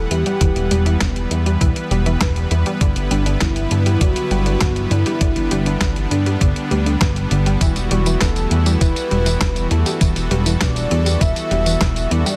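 A straight 4/4 pulse at 100 BPM drives this cinematic, nocturnal synthwave cut from a longer piece in E minor, built on a thumpy electronic kick re-recorded in a small room and a clean 12-bit drum machine of handclaps, hi-hat, tambourine and a medium-tuned snare. A dark, glossy, up-front chorused synth bass anchors the low end beneath sustained, smooth detuned supersaw chords with sidechain pumping, moving from Emadd9 to G6 at 2.8 seconds and back to Emadd9 at 7.6 seconds, while a bright, round analog pluck plays chorused, tape-echoed arpeggios in the background. On top, a full, mellow octave-layered lead carries the melody with vibrato, chorus, cassette tape colour and tape echo, all within light reverb and a dense, heavily limited modern master.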